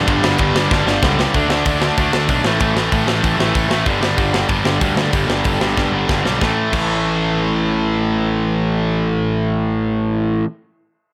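Two overdriven electric guitars open this energetic, upbeat punk rock excerpt together, hammering out bright, picked riffs up front over power chords that move from G5 through D5 and A5. A fuzzy, growly picked bass holds down the low end with an overdriven snarl, sitting a touch beneath the guitars. A tight studio drum kit drives a straight 4/4 pulse with its compact kick, medium-tuned snare, hi-hat, ride and crash, its rolled-off top keeping the cymbals warm. Short drum fills mark the turns between sections. The drums drop out at 6.8 seconds, leaving the guitars and bass to push on through the final A5 chord until the cut near 10.5 seconds. The sound is dry and close, with barely any room around it.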